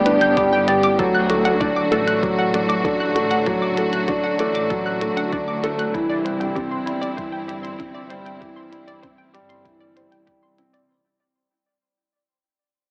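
A straight, steady 4/4 pulse comes from a muffled, thumpy electronic kick sitting in the background and clicky, tape-tinged electronic hi-hats, in this short cut from a longer piece of tender, hopeful piano-and-strings electronica. Up front, a soft felt-muted upright piano plays a mellow riff with audible action noise, its notes trailing into tape echo. A round analog pluck spins arpeggios high above, coloured by chorus, cassette-tape grit, tape echo and sidechain pumping. Beneath, a lush bowed double bass section holds the low end with portamento and its own pumping motion, while a clear, smooth symphonic string section sustains chords over a G, D and Cadd9 progression. The mix sits in a small echo-chamber room with an AM-radio tint, and a fade-out runs from 1.0 seconds to the end at 10.9 seconds.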